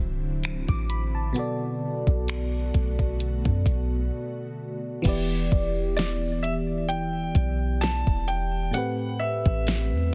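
A longing, late-night contemporary R&B excerpt in a lightly swung 4/4, where a glassy, bell-like FM electric piano with chorus and a round, deep 808-style bass carry the chords beneath an ethereal, airy pad that drops out at 5.0 seconds, a smooth drum kit of soft kick, fat snare, hi-hat, finger snaps and crash sits up front with a dry, dense modern polish, and a clear concert grand piano enters at 6.0 seconds with a high delayed melody.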